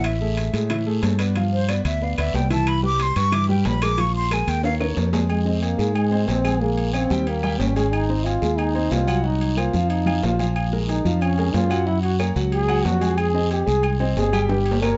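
Sultry and sophisticated, this Afro-Cuban jazz passage moves at 183 BPM in straight 4/4, with a hollow, breathy flute carrying the melody until 4.7 s. Beneath it sit a grand piano with audible action noise and a round, dark fretless electric bass up front with analog chorus. Ringing metal-shell timbales and agogo bells, a raspy guiro and woody claves in the background drive the percussion, and a drum fill leads at 5.3 s into F minor, where a mellow, whispered trombone with scooped notes and light vibrato takes an intimate solo under light reverb.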